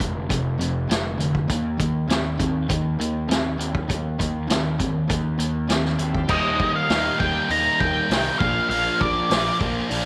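This swaggering, brooding classic rock excerpt opens with a sludgy distorted guitar and a very quiet, hollow-bodied overdriven guitar playing the riff together, over a punchy fuzz bass and a gritty, up-front vintage drum kit with a tight kick and dark cymbals. At 6.0 seconds a very quiet, bright tonewheel organ enters with shouting, lightly overdriven sustained chords through a slow rotary speaker. At 6.3 seconds an up-front octave-fuzz lead guitar takes a distorted melody, all within a moderate spring reverb.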